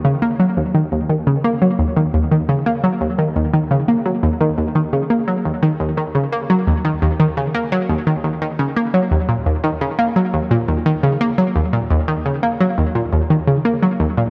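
A straight 4/4 pulse at 86 BPM carries this mysterious, expansive ambient fragment in Eb minor. A lone analog pluck plays from 0.0 to 14.2 s, ranging from Eb2 to Bb3, its round, bright tone with a fast attack and short decay colored by a noise layer, ring modulation and a filter sweep, and set up front with chorus and analog delay. A lush hall reverb with a 2.5 s tail opens the space around it.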